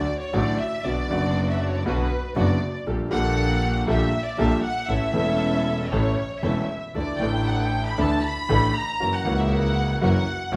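A rubato 4/4 pulse around 118 BPM carries this sultry, melancholic tango in D major, moving through D, Bm, Gmadd9/Bb, A, Dsus2 and F#7 within its 10.6 seconds, cut from a longer piece. A lush, bowed violin section sings the featured second line with soft attacks, vibrato and expressive portamento, while an up-front concert grand piano gives clear, smooth accompaniment with a deep, vintage bottom. Beneath them, an earthy, biting bowed double bass holds the low end, a dark sul tasto string section adds soft stabs in the background, and a large studio reverb lends a wet sense of space.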